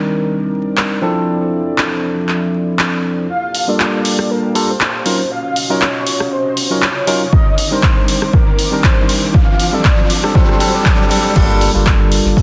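A barky, bright tine electric piano stands out in this deep, hypnotic deep house excerpt at 119 BPM in G minor, its stabs roughened by vintage 12-bit sampler grit, pumped by the sidechain and shaded with a low-pass filter and digital delay. Beneath it, a smooth analog pad holds sustained chords with chorus in the background, while a punchy, dry analog drum machine up front sets crash cymbal, handclaps, hi-hat and rim click in a swung 4/4 groove. From 3.3 seconds a breathy, flute-like synth lead carries the melody with vibrato, ensemble chorus and delay as the section builds, a filter sweep works on the electric piano and a riser climbs in the background. A dry, up-front electronic kick joins at 7.3 seconds, and at the drop at 11.4 seconds a round, dark analog bass lands on a low G alongside a very quiet, damped 70s kit with a fat snare and rolled-off top. The harmony moves through minor ninth and seventh chords from Cm9 and Dm9 to Gm9, and the dense, heavily limited master carries light reverb and a layer of vinyl crackle.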